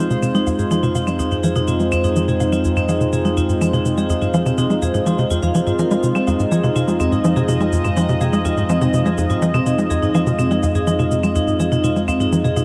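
An up-front, bright sawtooth pad with a chorused filter swell holds a sustained Fm7 chord over a punchy, driving sequencer bass riff with tape echo, while metallic, ringing hard-mallet vibraphone arpeggios with fast motor vibrato shimmer above, a dark pulse-width-modulated analog drone enters on F2 at 0.4 s in the background, and overdriven electronic cabasa and woodblock tick softly underneath, all set in a huge ambient reverb in this hypnotic, mysterious F minor space-music passage at 124 BPM.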